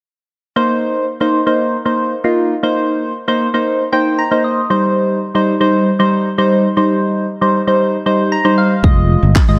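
Confident and driving, this dance-pop excerpt moves at 116 BPM in a straight 4/4, set in C minor. Soft, round electric-piano-like synth keys carry the accompaniment almost from the start, their mellow tone colored by chorus, phaser, a filter sweep and sidechain pumping, and they add short fills along the way. The harmony moves from Cm7 to Eb6 and then to Fm7. At 8.8 seconds a growly fingered electric bass, also pumping with the sidechain, arrives up front alongside a layered electronic pop drum kit of handclaps and a punchy kick. A lush hall reverb gives the mix a spacious sheen as the clip breaks off just after the full groove lands.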